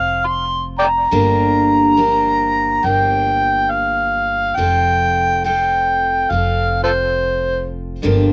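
An up-front, gritty overdriven harmonica carries the melody in a jazz-style solo with light vibrato, scooped notes and tongue slaps, over picked steel-string acoustic guitar with audible finger squeak and a woody, thumpy pizzicato upright bass, giving this melancholic, wistful acoustic folk excerpt at 69 BPM a light swing as the chords move from F5 to Gm7 to F in a dry outdoor recording with a dull top end.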